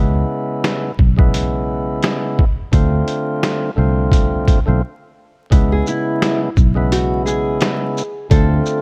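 Boom-bap hip-hop with a tough, dark mood and a swung feel, this short excerpt opens on a percussive tonewheel organ, lightly overdriven with key click and filtered through a cassette-tape haze, over a round, foam-muted fingered electric bass, moving between C#m7 and Dm7. A compressed, pitched-down sampler-style drum kit with a thumpy kick, medium-tuned snare, hi-hat and shaker enters at 0.6 seconds, carrying a gritty 12-bit character, and after a break at 4.8 seconds a small, fingerpicked nylon-string guitar with audible finger squeak takes the melody from 5.7 seconds. The whole sits in a dark production dusted with vinyl crackle.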